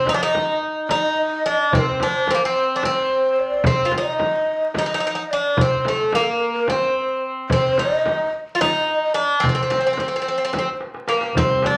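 An excerpt of a Turkish makam ensemble opens with a bright, metallic Greek bouzouki carrying the melody up front, its picked double strings partly doubled at the octave, while a breathy low ney plays a second line with vibrato and a close, slightly unsteady reed-cane tone. Just after, at 0.1 seconds, a crisp, vintage-sounding metal-shell darbuka joins in the background alongside a deep, close and dry frame drum, both struck with hard hands. The music moves at 218 BPM in eighths through a straight 7/8 in C makam huseyni, tuned slightly sharp, and the mood is longing and hypnotic. A drum fill arrives near the end, and at 11.4 seconds a rich, focused cello enters quietly in the background with a bowed, vibrato drone on a low C. The whole sits in a large, wet studio reverb with vinyl crackle across the sound.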